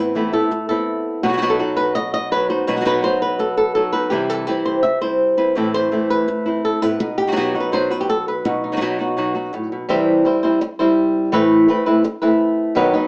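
Dramatic and passionate, this flamenco passage in B phrygian dominant moves at a brisk 167 BPM, cut from a longer piece, with a dark, fingerpicked acoustic flamenco guitar carrying the melody up front across its full 13.1 seconds. A second fingerpicked guitar with a warm tone sits up front as well, though quieter, playing stabs on chords such as Amadd9, B and C until it stops at 9.6 seconds, leaving the lead guitar alone as the music shifts into a new section. Moderate studio reverb surrounds the pair, though the overall sound has the character of a small speaker.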